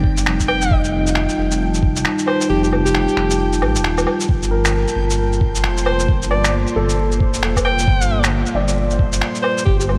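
This melancholic, rainy future garage excerpt in G minor opens at once on a moody analog pad, a mellow, woody upright piano sitting in the background, a deep, rumbling detuned saw bass held up front with tube saturation, a thumpy kick, and a reversed, granular texture drifting softly behind. The piano, pad and bass pump against the kick, and a muffled, tape-toned kit of shaker, finger snaps and woodblock joins almost immediately, swung at 134 BPM in 4/4. From 0.5 seconds a bright, present alto saxophone takes the solo melody with light vibrato and an analog delay, while the piano carries its own echo and the pad a chorus shimmer. The kick falls away from 2.5 seconds and returns at 4.3 seconds, where the harmony moves from Cm7 and F9 to Gm9. Vinyl crackle and a huge ambient reverb leave the dark mix soaked and dreamy.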